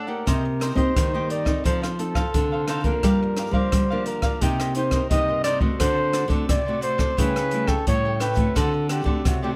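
Lightly reverberant, this short samba-and-choro passage carries a nostalgic, bittersweet mood over chords moving from Cm7 through F7, Gm7, Cm7, D7 and A7/C# back to D7. A dark, breathy trumpet with light vibrato and a plate-reverb sheen sings the jazz-style solo melody, backed by a crisp, picked cavaquinho and a warm, classical fingerpicked nylon-string guitar. From 0.3 s a small, bright nylon-string guitar adds the bass line while an up-front acoustic jazz kit plays hi-hat, rim clicks and a boomy kick.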